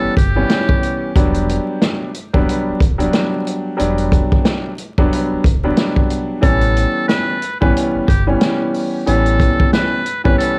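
Tough and gritty, this boom-bap hip-hop excerpt rides a swung groove built on a punchy, up-front vintage drum kit and a deep, sustained sub bass, while a dark, woody upright piano with audible action noise carries the A9 and Em9 harmony. A buzzy, thin trumpet with a metal mute plays a jazz-style solo line with light vibrato, sounding briefly at the start and returning at 6.4 seconds with tape echo. The piano and trumpet have a cassette-tape colour, and the whole piece sits in a small room with vinyl crackle, like a home recording on cassette.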